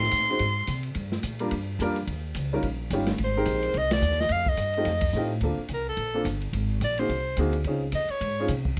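A swinging 4/4 pulse at 215 BPM drives this playful, relaxed small-group jazz fragment, with a woody upright piano comping through Ab, Gm7, Eb9 and Abmaj9 changes over a thumpy, gut-strung pizzicato upright bass and a dark, smooth drum kit of hi-hat, boomy kick, ride and medium-tuned snare. A clear, up-front soprano saxophone with vibrato and plate reverb states a brief phrase, rests until 3.2 seconds, rides a band accent at 3.9 seconds, then takes a solo from 5.4 seconds over Bbmaj7, Ab7 and Dbmaj7. A light reverb frames the natural-sounding group, whose mellow cymbals sit behind the bass and piano.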